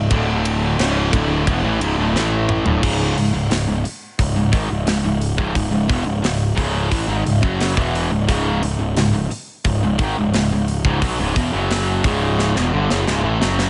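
Dark and aggressive, this heavy metal excerpt moves at a steady 88 BPM in a straight 4/4, cut from a longer piece and rooted in C# phrygian. A distorted, double-tracked electric guitar drives the riff from the start, sitting up front with a bright, compressed bite as the harmony shifts from D5 to C#m. Beneath it, a picked electric bass with fuzz and overdrive growls up front in the mix, its tone bright, direct and amped. A tight acoustic drum kit enters at 0.1 seconds, mid-forward with a medium-tuned snare, tight kick, and rolled-off top across hi-hat, ride, crash and toms. Drum fills at 2.1 seconds and again at 12.4 seconds mark the move into the second section and the close, all in a dry studio room.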